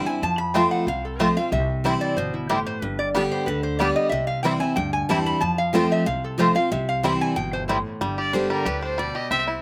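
A bright, nasal lap resonator guitar, played with a steel bar and fingerpicks, opens this lively, rustic bluegrass passage at 185 BPM in C major, taking a metallic slide solo through 8.0 seconds over a full-bodied picked dreadnought acoustic guitar carrying a slapback echo. A twangy, percussive fingerpicked banjo carries the melody up front, a thumpy, pizzicato upright bass anchors the low end, and a woody, double-strung mandolin adds picked stabs in the background. At 8.2 seconds a reedy, gut-string bowed fiddle takes a brief, distant-sounding solo in this dry, outdoor-recorded fragment cut from a longer piece.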